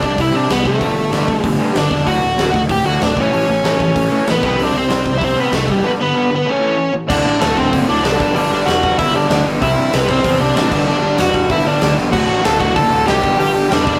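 Punk rock, upbeat and energetic, driven by a big acoustic drum kit with a punchy kick and medium-tuned snare ringing in a bright stone room, under a growly fuzz bass and two bright overdriven rhythm guitars, a hollow-body one in the background and a very quiet picked one beneath it. Up front, a smooth, warm overdriven lead guitar carries the melody across the whole passage, which shifts into a new section at 7.1 s, with a drum fill at 12.0 s. The rough rehearsal-room sound gives this cut from a longer piece a raw, live edge.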